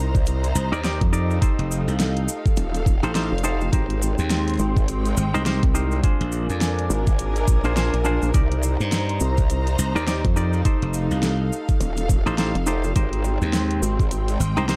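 Swaggering and gritty, this short glitch hop cut moves at 104 BPM with a swung 16th-note feel, built on an overdriven knocking kick and a dubstep kit with a huge snare, hi-hat and rim click, while a growling, wobbling formant-filtered bass and a punchy slap bass sit up front beneath clean semi-hollow guitar stabs with tape echo, a detuned sawtooth pad and lush distant strings pumping in the background, grainy maracas, and a dark, dry production cycling through Cm7, F7, Abmaj7 and Bb7.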